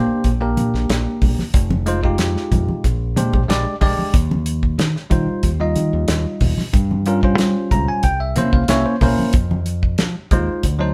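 Electric jazz fusion at 92 BPM in a straight 4/4, this short cut from a longer piece feels nocturnal and slick, set in F minor and moving through rich extended chords such as Bb69, Eb69, Gm7b5 and C7b9 before settling on Fm7. A bell-like, bright tine electric piano sits up front carrying the accompaniment, and it steps out with a clean fill from 7.4 to 9.3 seconds. Beneath it, a fingered electric bass gives a warm, punchy, amped low end. The damped 70s drum kit is dry and close, with a medium-tuned snare, a tight kick and hi-hat, while congas with a thick skin and soft hands add a gentle pulse from the background. The band sounds as if it is playing live together in one room, with a moderate studio reverb giving the mix a polished late-night sheen.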